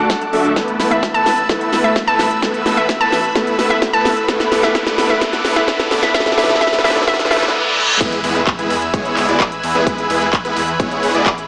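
Festival progressive house with a triumphant, anthemic lift, this excerpt from a longer piece spends its first 8.0 seconds in a build-up, with a filter sweep opening the bright, up-front supersaw chord riff while a hollow, bouncy square pluck carries the melody with chorus and digital delay, a soft felt-muted upright piano and a lush pad sit in the background, and a drum fill and a reverse cymbal lead into the drop. At 8.0 seconds the drop lands on an impact, with the thick detuned saw bass, pad and supersaw chords all pumping to the sidechain under a punchy layered electronic kick and a big-room kit of huge snare, crisp hats, claps, ride and crash. A very quiet riser sits among the effects, and the whole mix sits in a wet digital room reverb with a thin, small-speaker character.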